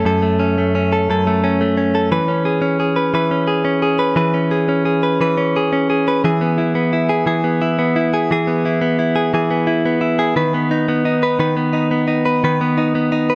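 Tender and heartfelt, this short pop excerpt in E major drifts at 58 BPM in a gentle 6/8, as a lone clean electric guitar, picked, compressed and placed up front with a touch of digital delay, moves through F#m, C#m7/E, E and B/D# across 13.3 seconds inside a moderate echo-chamber reverb.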